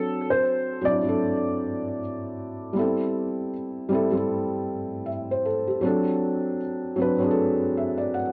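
Hip hop with a nostalgic, hazy mood, this short piece cut from a longer work moves at an unhurried pace with a swung sixteenth-note feel. A felt-muted upright piano carries the accompaniment throughout, sounding soft, mellow and vintage, its thick felt giving it a smooth, intimate presence placed up front and softened by a low-pass filter and cassette tape. Over it, a dark upright piano states a brief, woody, worn melody that ends at 2.7 seconds, slightly detuned, with audible action noise, and treated with tape echo and a low-pass filter. The harmony moves from D7 to Am7 and back to D7, and the felt-muted piano closes with a fill beginning at 7.4 seconds. A moderate spring reverb and studio ambience surround the pianos, and cassette tape colours the whole mix with an aged haze.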